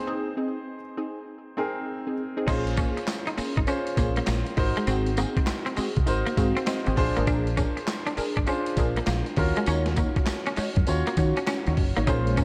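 Set in a light reverb, this slick, confident new jack swing cut in Bb minor moves at 100 BPM with a 16th-note swing, opening on a break where an intimate grand piano, its action noise audible, accompanies a punchy, detuned sawtooth polysynth with chorus and delay that jabs out stabs over an Ab chord. At 2.5 seconds the groove arrives: gritty, pitched-down sampler-style drums with a thumpy kick, high-tuned snare, handclaps and tambourine sit up front, a round, foam-muted fingered bass anchors the low end, and a twangy, compressed clean guitar riff shimmers with lush chorus through Bbm7, Ab7, Bb7 and Ebm7. A brassy, mellow analog pad with vibrato slips in at 12.1 seconds just as the excerpt cuts off.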